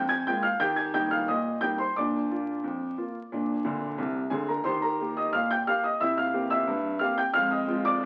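A clear, woody upright piano plays solo and up front through this short ragtime excerpt, jaunty and cheerful at 89 BPM in a straight 2/4 in E-flat major, tuned slightly sharp to A4 = 441 Hz. Spanning C2 to Ab6, it moves from Bb7 to Eb and through C7 to Fm, with a brief fill from 3.6 to 4.7 seconds. The sound sits in a wet, large studio reverb and carries the crackle of a very old 78 rpm record.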